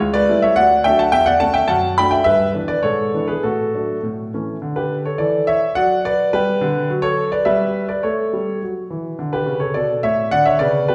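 Cheerful and playful, this classical-period piano sonatina excerpt in D major moves at 105 BPM in 2/4 with a rubato feel, its clear grand piano playing solo from C#2 to B5 with a present, long-sustaining tone up front, set in a wet recital hall reverb heard from further back in the room, passing from an opening section into a second one at 4.6 seconds and settling on a Dmaj13 chord at 10.3 seconds.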